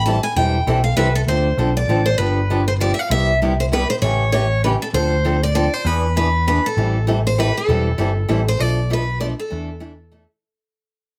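A fiery, swinging jazz manouche excerpt in A minor at 197 BPM in 3/4 opens with a lead steel-string acoustic guitar solo, its bright, fresh-stringed picking carrying finger squeak and a slapback echo up front. A punchy, amped electric bass and a boxy picked steel-string acoustic guitar carry the accompaniment through a moderate studio reverb, moving through Am7, Dm7, G7, Cmaj7, A7 and E7. The piece turns to Bm7b5 and E7sus4 as it fades out from 8.6 seconds.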